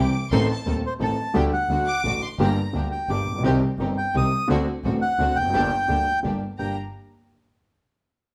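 This excerpt of a passionate, tense tango in G harmonic minor, played rubato in 3/4 at 173 BPM, opens with an intimate grand piano with audible action noise and deep bass, a clear bowed double bass with vibrato, focused studio strings playing lush stabs touched by slapback echo, and a distant, earthy chamber violin section carrying a high second line until 2.8 seconds. At 0.9 seconds a reedy, dark bandoneon takes the melody up front over chords running from Adim through D7 back to Gm, and the violins return briefly at 6.6 seconds. A wet studio reverb with a short decay surrounds the ensemble.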